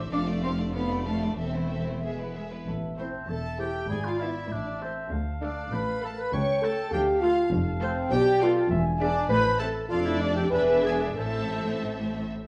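A French horn section holds sustained chords that sit out front in this stormy, urgent fragment from a longer classical-period movement for symphony orchestra, moving in a flexible, rubato two-beat pulse. Beneath the horns, bowed double basses and cellos share the bass, the basses smooth and even at a distance while the cellos add soft-attack portamento. A violin section carries the expressive, vibrato-laden melody up close, with a second violin line and a clear, focused viola accompaniment alongside. An airy flute ensemble weaves another line in the background, joined by a present solo clarinet at 2.7 seconds and a mellow, roomy oboe at 3.0 seconds. The harmony circles through minor-key tension, with dominant sevenths and a half-diminished chord pushing back toward the home chord. A stone room reverb surrounds the orchestra, and a worn cassette-tape quality adds a warbling pitch drift.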